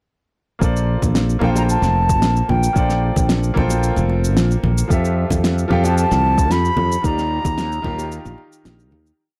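A dry, gritty recording in a small room opens this short, sunny sunset chillout piece, a single groove in Bb major at 112 BPM that begins fading out at 6.3 seconds. A growly, punchy fretless electric bass sits up front with a dotted-rhythm line and subtle chorus, while a soft, overdriven electronic kick and a fat, overdriven snare with shaker lay down a light lounge beat. Very quiet congas and bongos with hard hands add an acoustic touch from 1.0 seconds. A brilliant grand piano, intimate enough to reveal its action noise, holds spread chords with syncopated pushes and long sustain, colored by tape echo, moving from Bbmaj9 to Fmaj9 and Ebmaj9. From 1.4 seconds an airy baroque flute with a straight tone and crisp attack plays call phrases of a motif-based melody, also carried by tape echo.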